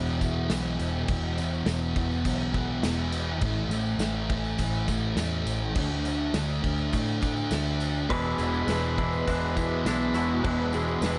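A dreamy, blissful shoegaze and dream pop rock excerpt at 103 BPM in E mixolydian opens with a thick, fuzz-distorted guitar riff drenched in lush chorus up front, a round, foam-muted bass, a jingly tambourine in the background and a loose indie drum kit with dark cymbals and a punchy kick in a pumping small room, moving through E5, A5 and D5 power chords before a twangy guitar riff with reverse reverb and bright, direct-recorded clean arpeggios with ensemble chorus and delay join on an E7 at 8.1 seconds, all set in a hazy plate reverb.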